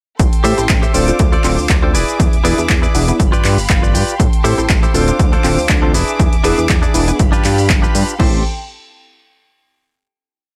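Groovy and nostalgic, this short filtered disco house piece in A minor runs at 120 BPM with a light swing, driven by an overdriven, punchy four-on-the-floor kick up front and an overdriven analog drum machine supplying shaker, open and closed hats, clap and crash, while a fat, detuned sawtooth bass with tube saturation jumps octaves beneath Am7, Dm7, E7 and G7 changes. A dark, chorused and phased polysynth comps rhythmic close-voiced chords alongside a bright, twangy, direct-recorded clean guitar playing funk chord rhythms, with a guitar fill at 3.4 seconds. A distant, smooth violin section holds sustained vibrato chords, and the synth, guitar, strings and bass all pump with the sidechain until the piece settles on a final Am7 at 8.2 seconds, wrapped in digital ambience.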